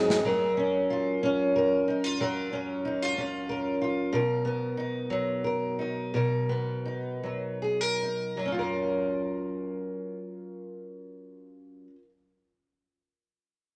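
In a 6/8 at a slow 47-62 BPM that slows down between 4.1 and 8.4 seconds, this tender, heartfelt pop excerpt in F# major features a double-tracked, fingerpicked steel-string acoustic guitar, dark and up front, moving through F#maj7 and Bmaj7 chords before returning to F#maj7 at 8.4 seconds and stopping at 12.1 seconds, all set in a moderate echo chamber reverb.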